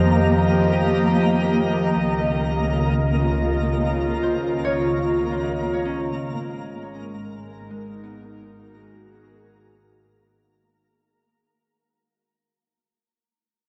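A slow, straight four-beat pulse carries this weightless, peaceful ambient passage. An up-front, breathy chorused pad holds sustained chords over a dark, woody bowed double bass section, a very quiet nasal analog drone and a sparkling granular texture. A ringing fingerpicked Celtic harp plays arpeggios through tape echo and lingers until 11.6 s. The whole fragment fades out, washed in cathedral reverb and the warbling pitch drift of worn cassette tape.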